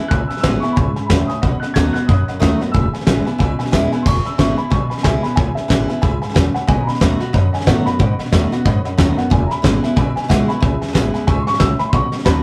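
Rowdy and upbeat, this rockabilly cut swings at 183 BPM in E major, moving between E and B7 chords in a rough rehearsal-room sound with moderate reverb. A dark, boxy upright piano carries the melody and takes a solo from 4.1 s, while a detuned, jangly honky-tonk upright piano and a full-bodied picked steel-string acoustic guitar fill in the accompaniment. Underneath, a woody, thumpy pizzicato upright bass and an up-front soft brush drum kit with a fat snare and tight kick drive the groove.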